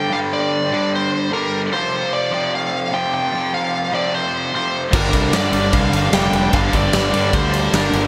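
A biting, overdriven lead guitar sings a melody over a cranked, up-front stack guitar riff with spring reverb, opening this heavy, aggressive hard rock excerpt in G minor at 150 BPM, moving from G5 to F5 power chords. At 4.9 seconds the full band crashes in on a G minor chord: a huge arena drum kit with a fat snare, punchy kick, crash and ride cymbals, a growly fuzz bass, two very quiet picked rhythm guitars (one crunchy, one tight and double-tracked) and a gritty tonewheel organ holding sustained chords with key click and a slow rotary speaker. A lush hall reverb and bright 1980s-style digital production give the 8-second fragment a big, stadium-sized sound.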